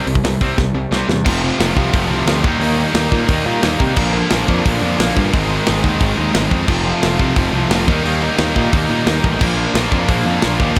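Two bright, picked distorted guitars kick off this rowdy, rebellious punk rock excerpt at a straight 176 BPM, joined at once by a growly, fuzz-laden overdriven bass and a tight, up-front metal drum kit with a rolled-off top whose fill from 0.6 to 1.3 seconds leads into a high-gain, double-tracked heavy guitar entering at 1.2 seconds, as the background riffs drive through C, F, Eb, Bb and Ab in a dry room.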